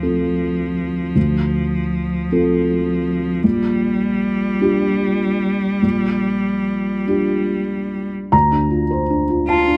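A dark, boxy felt-muted upright piano sits up front, with a smooth, bowed solo cello singing a clear second line with vibrato, in this reflective, fragile neoclassical fragment cut from a longer piece, moving in a rubato 6/8 at 47-53 BPM in D minor from Dm7 to Bb6 at 3.4 seconds and back to Dm7 at 8.3 seconds, all captured close and dry in intimate detail.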